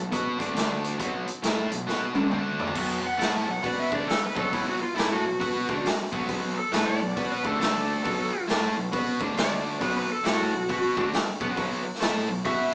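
Smoky and gritty, this swung blues rock and southern rock excerpt opens with a bright, double-tracked cranked stack guitar riff, a fuzzed, punchy picked bass in the background and a saturated raw garage drum kit with a punchy kick and rolled-off top, and after a drum fill an overdriven slide guitar takes a solo from 2.8 seconds over Bm and D5 chords, all heard as a live band in a large studio with a small-speaker sound.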